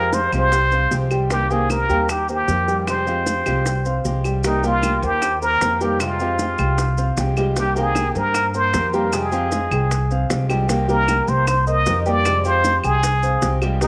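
A moderate spring reverb lends this short excerpt of Cuban son and guajira a sultry, nostalgic air, with the plunger-muted trumpet and upright bass sitting up front. In C minor at 154 BPM in a straight 4/4, the music rocks back and forth between Fmadd9 and Cm7. The trumpet carries the melody as a jazz-style solo, its clear, breathy wah-wah tone shaded with light vibrato and scooped notes. Beneath it, the gut-strung bass plays pizzicato with a thumpy, dark sound, and a fingerpicked old ladder-braced acoustic guitar adds boxy accompaniment on worn strings. A vintage grand piano rolls out mellow arpeggios with long sustain, while round, low-tuned bongos and compressed, saturated claves sit in the background alongside grainy maracas, the percussion entering just after the start. A new section begins at 4.4 seconds and carries on to the end.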